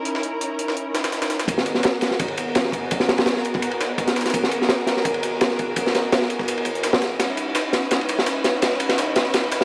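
At 168 BPM in a straight 4/4, this frenetic, atmospheric drum and bass and jungle excerpt in G# minor opens with a lush, bowed symphonic string section holding sustained chords, its vibrato smooth and even under a filter sweep through the first 1.5 seconds, moving from C#madd9 to G#m9. At 0.1 seconds a pitched-up, compressed sampler-style break of hi-hat and high-tuned snare joins in. At 1.5 seconds a second, up-front breakbeat kit arrives with a punchy kick, medium-tuned snare and dark ride cymbal, saturated and crunchy with a rolled-off top. A very quiet, deep sine bass enters at the same moment, its long notes decaying beneath the drums as the track builds. A drum fill from 7.2 seconds carries the harmony to C#m9, all set in a dry, gritty recording with light small-room reverb and vinyl crackle.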